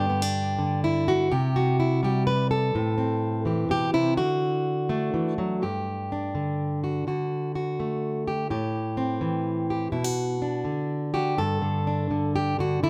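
A lone fingerpicked steel-string acoustic guitar opens this short folk piece, cut from a longer work, in a hopeful yet nostalgic mood. The jumbo-bodied instrument sounds dark and full-bodied, placed up front and captured by close, detailed microphones with a light touch of reverb. Set in a three-beat metre with a free, rubato feel, the playing ranges from G2 to B4 across its brief 12.9 seconds. The harmony moves from G through C5, Am7 and D, then a new passage beginning at 5.6 seconds cycles through G5, D, Am7 and Bm. A final turn to G5 at 11.4 seconds begins the closing section of the fragment.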